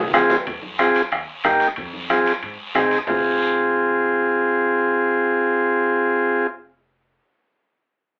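A drum fill opens this short cumbia cut from a longer piece, setting a passionate, danceable groove at 183 BPM in F minor, straight 4/4. A vintage combo organ sits up front with a buzzy yet clean tone, carrying the accompaniment through chords that move between Fm, Eb and Ab. Beneath it, a soft-beater bombo with a band-limited vintage thump drives the beat. Background congas with thick skins and hard hands sound compressed and saturated, a ringing metal-shell cowbell and timbales add shimmer, and a raspy guiro scrapes from a distant, large-room space. The whole percussion section drops out at 3.2 seconds, leaving the organ to continue until 6.5 seconds and a woody pizzicato upright bass on steel strings, tucked in the background, to close at 7.2 seconds. The band plays live in one small room, and the recording has a telephone sound.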